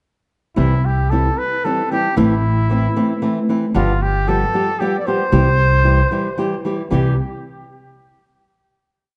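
At 0.6 seconds, trumpet, nylon-string guitar and upright bass begin together in this short, complete piece of mariachi-flavoured Mexican folk music, a romantic and festive number in 3/4 with a loose, rubato feel. The trumpet carries a solo, classical-style melody built from motifs in balanced periodic phrases, its tone warm with a soft attack, light vibrato and a touch of tape echo. Beneath it, the guitar sounds small and intimate, mixing fingerpicked open chord shapes with chop strumming, while the pizzicato bass gives woody, dark root-and-fifth notes on the main beats. The harmony moves from C through Am and G7 before returning to C, and a final chord arrives at 6.9 seconds before the instruments fall away just after 7 seconds. Close, detailed microphones keep all three parts up front, set within a moderate recital-hall reverb.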